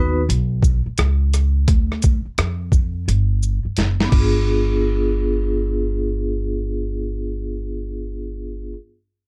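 A mellow, cool jazz-hop excerpt at 86 BPM opens with a metallic, ringing vibraphone under a low-pass filter sweep, starting on a rootless Emaj7sus2 chord with a medium motor vibrato, alongside a woody, growly pizzicato upright bass. A gritty, compressed, pitched-down boom bap kit with a thumpy kick, medium-tuned snare, rim clicks, shaker, hi-hat and crash joins at 0.3 s with a lazy 16th-note swing, drops in a fill at 3.8 s and stops at 4.3 s. The vibraphone and bass carry on alone over a G7b9 chord, all up front in a dry sound.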